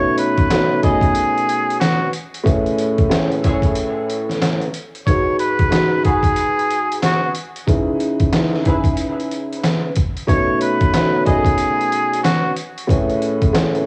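Swung sixteenths on a gritty, pitched-down sampler kit of thumpy kick, snare, hi-hat and handclaps drive this dark, tough boom-bap hip-hop excerpt, where a woody upright piano with audible action noise plays B7, Amaj9, G#m7 and C#m9 beneath a nasal, breathy straight-muted trumpet that sings a jazz-style melody with vibrato until 12.5 seconds, while distant bowed string stabs with analog delay sit in the background of a dry, small-room home cassette recording.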